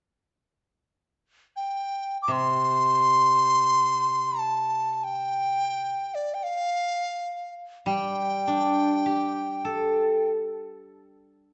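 In free time and G shang mode, this graceful, festive Chinese traditional chamber excerpt sets a hollow, buzzing bamboo dizi up front on the melody from 1.6 seconds, joined at 2.3 seconds by a silvery, ringing steel-string zither played with fingerpicks in accompaniment, all bathed in a wet recital hall reverb with dark, warm production.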